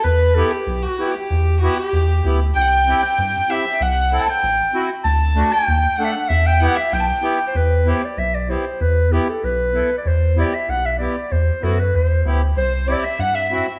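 A warm, smooth-topped clarinet leads this soulful, bittersweet klezmer excerpt in E minor at 96 BPM in 2/4, playing in a classical style and taking a solo for the first 7.6 seconds, while a rich, pure violin floats alongside it with a soft-attack sul tasto line that drops out at 7.5 seconds and returns at 12.6 seconds. A rubbery, hollow square-wave bass sits dark and up front with a bouncy filter pluck and moving notch, and a reedy, close-miked accordion with slow beating fills out the chords from 0.4 seconds. The harmony moves through Em, C and D under a moderate recital hall reverb.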